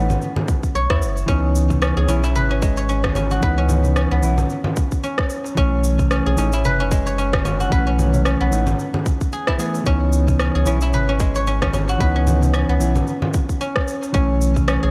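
Ringing, silvery guzheng arpeggios played with fingerpicks open this mystical, hypnotic organic downtempo excerpt in C# minor at 112 BPM, over a dark, clean electric guitar with low-pass filtering, digital delay and sidechain pumping and a round, up-front sine sub bass with tube saturation, while produced electronic congas, cabasa and rim click re-recorded in a large room enter at 0.1 s, a tight electronic kick arrives at 0.5 s, and a crisp, very quiet metal-shell darbuka joins distantly at 1.7 s, the lightly swung 16ths and fairly dry mix swaying between B7sus4 and C#m9.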